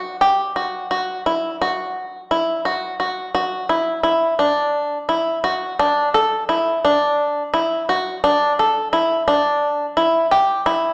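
A bright, twangy acoustic bluegrass banjo played with fingerpicks carries this restless, urgent contemporary instrumental excerpt alone and up front, its percussive attack ringing into a wet scoring-stage reverb at 172 BPM in a straight 7/8, with a new section arriving at 4.1 seconds before the 10.9-second cut.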